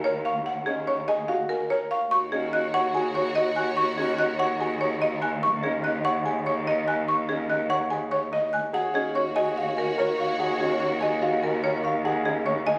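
Captured on a phone in a recital hall with moderate reverb, this hypnotic, propulsive excerpt of minimalist classical pattern music sets a buzzing, bright marimba melody over mellow xylophone and intimate background grand piano arpeggios and a distant, expressive cello bass, while an airy alto flute line and a lush string section's sustained chords join at 2.1 seconds and again at 8.7 seconds.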